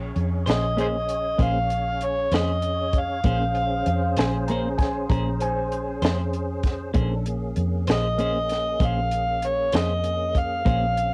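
A soulful, mournful slow blues in 12/8 at 65 BPM in Bb minor, this excerpt from a longer piece centres on an up-front, gritty overdriven harmonica solo with light vibrato, tongue slaps and scooped notes, over a round, foam-muted electric bass with tube saturation, a dry cocktail kit with a high-tuned snare and punchy kick, picked guitar accompaniment shimmering with harmonic tremolo, and sustained tonewheel organ with key click, chorus vibrato and a slow rotary speaker, while a woody upright piano adds a second line from 3.9 to 6.0 seconds, all captured as a home cassette recording in a booth with moderate ambience.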